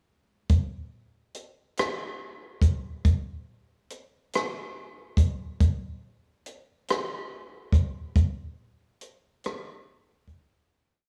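A dry, up-front compact cocktail drum kit carries this intimate, warm R&B piece, its punchy kick, hi-hat and rim click tracing a slow six-eight beat at 47 BPM in dotted quarters, all heard through the warbly pitch drift of worn old cassette tape and a small room's light reverb before a fade-out from 8.2 to 10.7 seconds.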